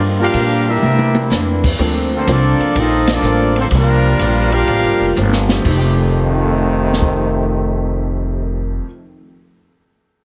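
A heavily compressed, radio-style sound sits in a moderate recital-hall reverb on this short, joyful cut of swinging big band jazz, taken from a longer piece. A mellow, tight trumpet section with vibrato carries the melody up front until 5.2 seconds, over a woody pizzicato upright bass and a picked, boxy old ladder-braced acoustic guitar in the background. A bright trombone section holds sustained chords at the start, while a second trombone line with soft attack and light vibrato runs from 0.2 seconds to 8.8 seconds. An open drum kit with dark cymbals and a boomy kick drives the swing and adds two fills and a band accent at 3.0 seconds. A clear, intimate grand piano, its action noise audible, drops in briefly and then returns as the harmony settles onto a final dominant chord.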